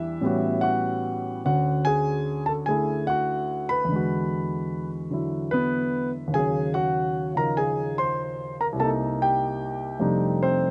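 A relaxed swing at 98 BPM in 4/4 sets an easy, unhurried pace for this short solo jazz piano passage, cut from a longer piece. A single concert grand carries everything, ranging from C2 up to C6. Its tone is warm and up front, with a deep bass that gives the lower notes real weight. The harmony drifts through rich extended chords, opening on A13 and moving through Dmaj7, E9 and Ebm9 before landing on Cm7 and then F13 at 10.0 seconds. Recorded outdoors, the piano sits in a light reverb that lends a soft halo while keeping the sound close and intimate.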